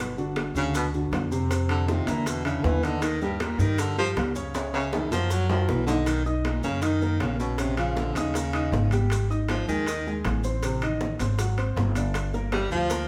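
A baritone saxophone sits up front with a soft-attack, scooped, vibrato-laden jazz solo that drops out at 10.2 seconds and returns at 12.5, over a woody, dark pizzicato upright bass and an intimate vintage grand piano whose action noise is audible beneath its smooth, deep-toned comping. This lively, sophisticated Afro-Cuban jazz moves at 158 BPM in a straight 4/4, with ringing high-tuned congas in the background, metal-shell timbales, tight very quiet bongos and grainy close maracas, plus a drum fill from 4.5 to 6.1 seconds. The band plays live in one room with a wet, large studio reverb, and the chords range from Gmaj7 through Bmaj9 to a closing Gm7 in this section cut from a longer piece.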